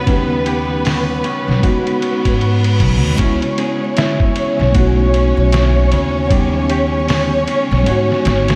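Dark and brooding, this 77 BPM trip hop excerpt in C# minor sets a mellow tine electric piano, carrying harmonic tremolo, tape echo and a filter sweep until 3.2 seconds, against a lush bowed violin section, a ringing fingerpicked concert harp with its own tape echo, and a woody, gut-strung pizzicato upright bass pushed up front with tube saturation. A muffled, pitched-down sampler-style drum kit with a thumpy kick enters at 0.1 seconds in a small room, and a faint electronic reverse cymbal sounds in the background from 2.0 to 3.2 seconds, all bathed in a dreamy cathedral reverb and vinyl crackle.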